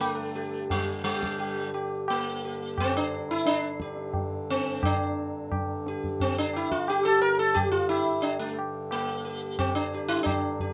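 Solemn and longing, this brief Hindustani classical excerpt in raga kafi on G moves at 88 BPM in a 5/4 metre and speeds up across its 10.7 seconds. An up-front, plectrum-plucked sitar carries the melody with a buzzing, shimmering tone ringing through its sympathetic strings, while a reedy, nasal hand-pumped harmonium breathes a low drone beneath. Low-tuned tabla sounds close and dry yet ringing, all set in a light reverb.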